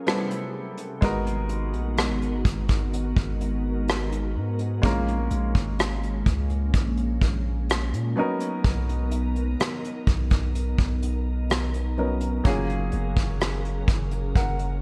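Moody and sensual, this slow contemporary R&B excerpt settles into a straight 4/4 groove. A baby grand piano carries the accompaniment with an intimate, natural tone, short sustain and audible action noise, sitting up front in the mix. Beneath it, a glassy FM pad holds sustained chords with a slow attack and long release, its ethereal shimmer colored by ensemble chorus, built-in reverb and sidechain pumping. A vintage brush drum kit enters at 0.1 seconds with hi-hat, rim click and a punchy kick, sounding dark and smooth in an acoustic studio room. After a brief opening break, a deep, sine-like 808-style bass arrives at 1.0 seconds, its fast attack decaying into long tones as the harmony moves through minor seventh chords toward Bmaj9 and F#maj9 under light reverb.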